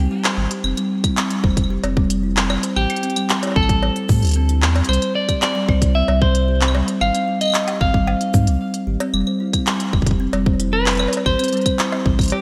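Glitchy and playful, this short IDM excerpt moves at 113 BPM in a straight 4/4, cut from a longer piece and tuned slightly low to A4 = 439 Hz. A clean electric guitar carries the melody between G4 and F5, its dark, picked tone sitting up front and trailed by digital delay. Beneath it, a woody, hollow-bodied kalimba plays ringing thumb-plucked arpeggios with a close, full presence, echoed through its own delay. A deep, round sub bass with a sine-like, mellow sustain anchors the low end, while an organic electronic kit of cabasa, claves, cowbell, handclaps and smooth hi-hats enters at 0.2 seconds, tape-tinged and treated with studio and gated reverb. A tight electronic kick joins at 1.0 second, and the harmony cycles through Abmaj7, F5, Am7 and Csus2 within a bright 1980s-style digital production touched with light reverb.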